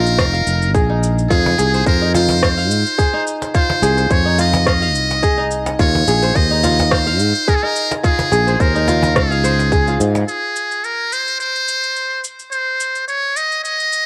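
Heard as a home cassette recording with light reverb, this excerpt of earthy, meditative organic downtempo moves at 107 BPM in 4/4 with a gentle 16th-note swing over Fm and Eb7sus4. Up front, a buzzy, thin trumpet with a metal mute carries the melody with vibrato and scooped notes through cassette tape and tape echo, above ringing, crisp fingerpicked kora arpeggios in tape echo and plate reverb and a bright, growly fretless electric bass with tube saturation and sidechain pumping. A tight electronic kick, tape-colored electronic shaker and rim click, and a woody cajon played with hard hands drive the groove until the kick stops at 9.8 s and the chords fall away at 10.3 s, leaving the trumpet with the shaker and rim click alone from 11.4 s.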